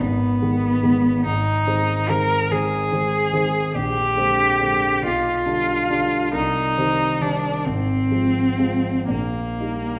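In a rubato 6/8 lilt at 38-49 BPM in dotted quarters, this lyrical, serene romantic classical passage, cut from a longer piece, sets a bowed cello melody with a rich, smooth vibrato over dark, mellow grand piano accompaniment with deep bass, both up front in a recital hall reverb lasting 1.8 seconds, as the harmony drifts from G#m through Bb9 and Cm to Eb/Bb.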